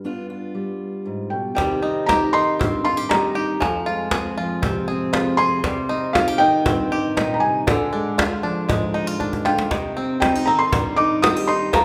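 Acoustic folk in C minor at 118 BPM, this reflective, melancholic excerpt opens with a soft, felt-muted upright piano carrying the melody, its intimate, short-sustained tone revealing audible action noise, over a warm fingerpicked steel-string guitar with fresh strings sitting up front. At 1.6 seconds a bright, twangy bluegrass banjo joins with percussive arpeggios alongside a woody cajon with faint snares, which plays a short fill at 9.2 seconds. A moderate recital hall reverb surrounds the ensemble as the chords move from G7 into C minor, F minor and D diminished before settling back on C minor.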